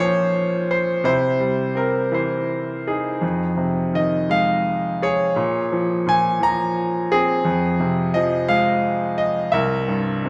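A grand piano sits up front in a reverberant recital hall, its brilliant, open tone carried by a generous, lingering tail from the church or concert-hall space. This is lyrical classical solo piano, wistful and reflective, moving in 6/8 with a freely breathing rubato. The single piano plays alone throughout the 10.3 seconds, spanning from C2 in the bass up to Bb5 in the treble. Its harmony drifts through Bb minor, C, F minor seventh and Bb minor seventh before settling on F minor and turning to C7 at 9.5 seconds. Cut from a longer piece, the passage feels suspended mid-thought.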